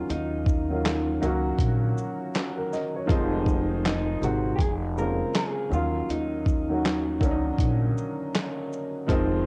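Lo-fi hip hop at 80 BPM in 4/4 with a swung sixteenth-note feel, this reflective, melancholic piece sits in Eb dorian and moves through Ebm9, Fm7 and Bbm7/F before settling back on Ebm9. A warm, intimate upright piano sits up front with smooth, vintage tone and audible action noise, filtered and softened by cassette tape. Beneath it, a pizzicato upright bass on gut strings gives a woody, thumpy foundation, while a dusty, sampler-style kit enters at 0.1 seconds with a compressed, gritty sound, a fat snare, handclaps, hi-hat and shaker, re-recorded in a large room and placed prominently in the mix. A dark, slightly broken-up electric guitar carries the picked melody through a small old amp, its lo-fi tone colored by a low-pass filter, tape and analog delay, until it drops out at 7.6 seconds. Light reverb and a home-cassette character lend the whole cut a hazy, lived-in feel, and the recording is an excerpt from a longer piece.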